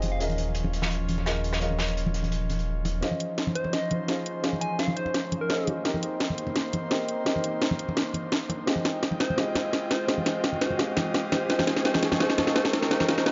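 A gritty, saturated breakbeat kit with high-passed hats and snare, along with soft-handed congas, sets a straight 170 BPM liquid drum and bass groove, joined by a deep, rumbling detuned saw bass until 3.0 s. Then an overdriven, up-front electronic kit with a cracking snare takes over for a drum fill and build-up. A dark, boxy baby grand piano with dub echo and an airy, breathy chorused pad hold lush chords moving from Eb9sus4 through Dbmaj9, Cm7 and Fm9, with a filter sweep on the pad. A round, warbling FM lead with vibrato adds melody, and a very quiet riser enters at 5.6 s in this rolling, echo-heavy excerpt bathed in plate reverb.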